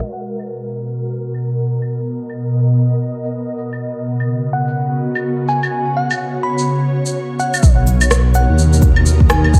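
Swung 16ths at 126 BPM in 4/4 drive this rainy, wistful future garage fragment, where an ethereal, airy pad holds sustained Bmaj7 and C#7sus4 chords with ensemble chorus and sidechain pumping, overdriven electronic shaker, claves, cabasa and rim click enter at 0.4 s, a sparkling, bell-like FM electric piano takes the melody with chorus and digital delay from 4.5 s, and at 7.6 s a deep, overdriven electronic kick and a menacing, detuned saw bass with a filter swell arrive, a filter sweep running through the opening 7.6 s while the whole mix carries vinyl crackle and light digital ambience.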